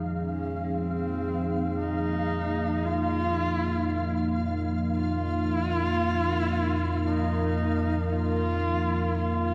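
A dark analog pad of detuned sawtooth chords with chorus sits up front over a deep, ominous drone on F with lush chorus and a faint, flickering granular shimmer, as a husky horsehead fiddle enters at 0.2 s with expressive vibrato and portamento through a diffuse ambient delay, shaping an unsettling, desolate dark ambient drone in F minor at 57 BPM, tuned to A4 = 435 Hz, held on a single Fm chord and bathed in a dreamy 2.8-second hall reverb.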